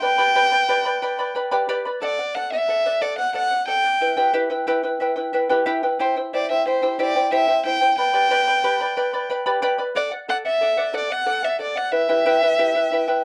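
The recording is dry and close, with the intimate feel of a 1970s studio and a modest booth ambience around the players. This melancholic, wistful Andean folk piece moves in an unhurried 3/4 and is cut from a longer work. A single bowed violin, dark in tone with vibrato, carries the melody in a smooth, even line that stays within a narrow upper register. Beneath it, a fingerpicked charango supplies the accompaniment, its bright double strings, some doubled at the octave, giving a shimmering, acoustic sparkle. Both instruments sit up front through the whole 13.2 seconds, turning over a cycle of G, D, E minor and C before returning to G and D and settling on E minor at 11.9 seconds.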